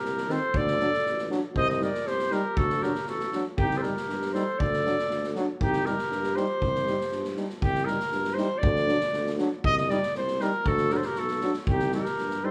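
A roomy, live-in-one-room sound with moderate studio reverb frames this bittersweet, virtuosic Balkan brass band fragment in C Dorian sharp-four, moving at 119 BPM in a straight 2/4 over an alternating Cm and D harmony. A mellow, distant trumpet carries the melody up front, while a soft-attacked, smooth-topped clarinet plays a second line, dropping out at 7.4 seconds and returning at 10.7 seconds. Beneath them a vintage-toned tuba holds the bass, a bright trombone and a background French horn with light vibrato fill in the accompaniment, and a street-band drum kit with a boomy kick and medium-tuned snare supplies the percussion.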